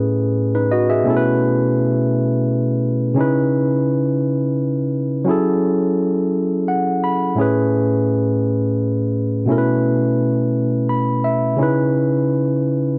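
A barky tine electric piano opens this sultry, yearning R&B fragment on its own, lightly overdriven through a combo amp and sitting bright and up front. It moves in a slow, straight 6/8 sway, spanning from its low register up into its upper reaches as it voices lush extended chords: Amaj9 moving to B9sus4, then C#m9 and F#m7 before cycling back. Short fills from the same piano slip in at 6.3 seconds and again at 10.5 seconds, adding small flourishes between the chord changes. A light reverb surrounds the instrument, while the whole recording carries the worn, warbling character of old cassette tape, its pitch drifting. Cut from a longer piece, the passage closes on C#m9 at 11.6 seconds, leaving the yearning mood hanging.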